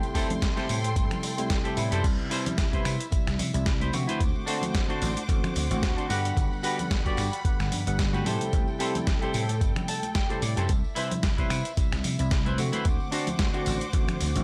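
Nu-disco with a groovy, cosmic mood and a light swing, this excerpt rides an up-front, overdriven electronic kick and a gritty, dusty soul sampler-style kit of snare, hi-hat, finger snaps and crash, with tambourine and congas tucked in the background, while a growly vintage slap bass enters at 0.7 seconds with sidechain pumping, a bell-like tine electric piano with lush chorus and analog delay lays down the chords, a clean semi-hollow electric guitar plays a picked riff with a fill at 9.6 seconds, and biting, vibrato-rich symphonic strings pulse beneath over a cycling Am7, Cmaj7, D7 and Gmaj7 progression in a dry, close sound.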